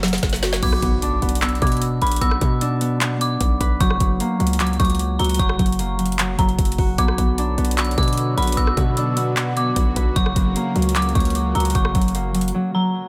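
A bright, thumb-plucked concert harp rings up front with filtered, echoing arpeggios over a melancholic, brooding trap beat at 151 BPM in half-time, set in B harmonic minor and moving between F# and Bm. A knocking, woody trap kit with metallic hats and a punchy, heavy 808-style bass open with a drum fill, while an eerie, inharmonic synth bell with chorus and phaser enters at 0.6 seconds alongside a very quiet impact. A smooth sawtooth pad joins with sustained chords at 7.0 seconds, and the drums and bass drop out at 12.5 seconds for a brief silent gap in this cut from a longer piece, all in light digital reverb.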